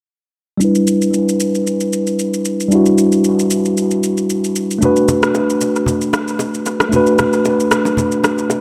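A swung sixteenth-note groove of tape-tinged electronic shaker and rim click carries this soulful, hypnotic amapiano fragment from a longer piece, as a mellow, up-front tine electric piano moves from Em7 to Bm7 under a sweeping low-pass filter, close, dry congas and bongos join at 4.8 seconds, and dub echo on all three parts and a plate reverb fill out the echo-heavy mix.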